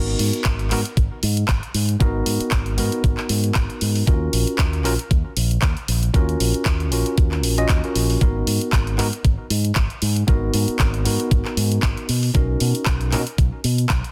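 The fingered electric bass stands out most: bright, up front and direct, pushed through an envelope filter from the very start. This is a sensual, groovy nu-disco clip cut from a longer piece, riding a lightly swung sixteenth-note feel. An electronic kick, thumpy and sampler-style with overdrive and studio reverb, sits heavy underneath from 0.5 seconds. A layered, produced pop drum kit with handclaps and bright hi-hats joins at 0.2 seconds, dressed in studio reverb. A clean tine electric piano heard through a combo amp plays the accompaniment, pumping with sidechain and trailed by delay until 13.2 seconds. The harmony moves through minor seventh chords before resting on a major seventh near the close, all under a dense, heavily limited modern master with digital ambience.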